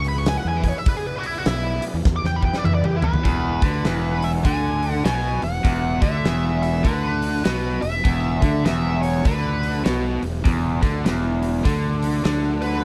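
A huge arena drum kit with a fat snare, punchy kick and pumping room sound drives this raunchy, swaggering blues rock and southern rock power trio excerpt in E mixolydian, swinging at 100 BPM in 4/4 with little reverb. It opens on a dark, distorted lead guitar solo through wah, over a gritty tonewheel organ turning through a slow rotary speaker in the background and a round, fuzzy fingered bass. During a drum fill from 2.1 seconds, the organ stops at 3.2 seconds and a double-tracked, overdriven rhythm guitar riff enters up front, while the bluesy lead keeps playing to the end.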